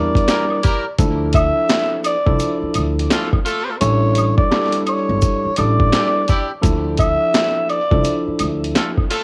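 A growling, raspy tenor saxophone carries the melody up front from the start, over a clean tine electric piano heard through its built-in speakers and a woody pizzicato upright bass, in this gritty, tough, swung boom-bap hip-hop excerpt. A pitched-down, compressed sampler-style drum kit with a thumpy kick and high-tuned snare sits up front from 0.2 seconds, joined by tight, clear horn stabs and a tube shaker and woodblock in the background. Saxophone, piano, horns and drums carry a cassette tape coloring, with plate reverb and tape echo on the saxophone and horns, as the chords move from Em7b5 to Dmadd9 and A7sus4 in a small, home-recorded room.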